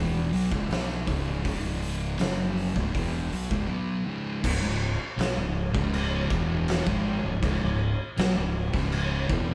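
Stoner and doom metal with a heavy, hypnotic pull, cut from a longer piece: two thick fuzz guitars grind out a dark, picked riff sitting back in the mix while a growly, overdriven fingered bass pushes through with a punchy edge. An oversized, low-tuned drum kit enters at 0.3 seconds, up front with a fat snare, punchy kick, crash and hi-hat, its saturated, gritty sound rolled off on top. The band plays live in one room with light reverb, opening on a C# minor chord and moving into a second section at 4.4 seconds.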